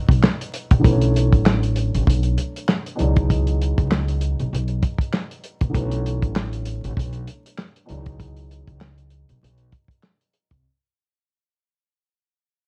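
Boom-bap hip-hop with a dark, tough mood, this short excerpt swings at 98 BPM as a dry, muffled soul drum kit of kick, snare, hi-hat and handclaps sits up front beside a woody, thumpy pizzicato upright bass on gut strings. A boxy, mellow baby grand piano with short sustain and filtered highs and lows plays minor eleventh chords, opening on a rootless C#m11 and then moving between Bm11 and C#m11. The whole mix carries light reverb, worn cassette warble, pitch drift and vinyl crackle, and fades out from 0.8 seconds to the end at 10.6 seconds.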